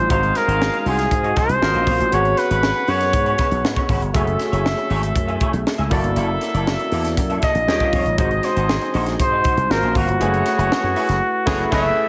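Polished and nocturnal, this 119 BPM slice of 1980s jazz-funk pop opens with an up-front, vintage-toned flugelhorn singing the melody with vibrato, dropping out briefly before returning at 7.4 seconds, over a barky, overdriven tine electric piano bathed in lush chorus and a growly slap bass pushed through an envelope filter. A smooth-topped horn section carries a second line while a slightly broken-up, lo-fi electric guitar picks a riff in the background, and a crisp fusion kit with a high-tuned snare, punchy kick and gated reverb drives the straight 4/4 groove through chords such as G#13, F#m9 and F#7alt. The urban mood closes on a band accent at 11.2 seconds, where the excerpt is cut from a longer piece.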